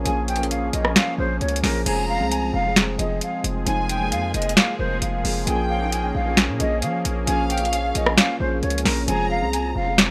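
A half-time trap beat at 133 BPM in F minor drives this brooding, melancholic hip hop excerpt, with an overdriven analog drum machine up front (crisp snare, metallic hi-hats, rim clicks and crashes) and a punchy, heavy 808-style bass. A felt-muted upright piano adds dark, intimate accompaniment under a detuned sawtooth pad with chorus and tremolo, while a breathy jazz flute carries an expressive, vibrato-laden melody through a low-pass filter over Bbm7 and Fm chords. At 1.9 s a lush, distant violin section enters with a bowed second line bathed in tape echo, all set in studio reverb with a rough home-demo mix.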